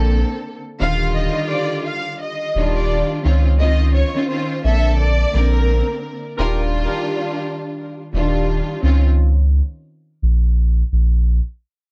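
Soulful and nostalgic, this swung 86 BPM hip hop fragment in Eb lydian lays a woody, lush, tape-colored studio string section over a deep, round dub sub bass that holds the bottom until 11.4 s, while a focused, smooth-topped violin section sings the melody with delay from 0.8 s and a clear, distant horn section lands one brief delayed stab at 6.4 s, set in a dark, warm production with light reverb.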